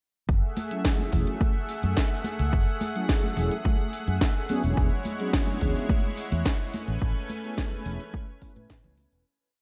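Groovy and cosmic, this short nu-disco piece rides a straight four-on-the-floor pulse from its opening moments, settling into a single groove that fades out from 6.3 seconds to its close at 9.3 seconds. An up-front, punchy electronic kick with overdrive anchors the beat, joined by a layered house drum kit whose cracking snare and open and closed hats carry a disco backbeat, both re-recorded in a large room. Close, dry congas with hard hands sit in the background, while a bright, amped fingered electric bass with an envelope filter plays a syncopated riff. A mellow, brassy synth with a detuned sawtooth edge, ring modulation, vibrato and delay punches out syncopated rootless chord stabs, and a lush, thick unison pad with a slow attack and long release sustains underneath, both pumping against the kick and thickened by chorus. The harmony moves from F#m9 to E13 and then Amaj9, framed by light reverb and a bright 1980s-style digital production.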